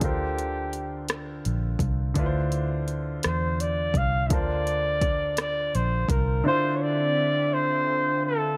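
Sultry and late-night, this slow six-eight R&B piece in D minor moves at 56 BPM, with a breathy, mellow flugelhorn carrying the melody up front, intimate and distant, over concert grand piano chords with a deep, natural low end. A dark, round fingered electric bass and a soft, overdriven drum kit of hi-hat, kick and rim click hold the groove, then drop out just after 6 seconds. A hollow, airy pad with chorus enters at 6.9 seconds in the background, all set in light studio reverb.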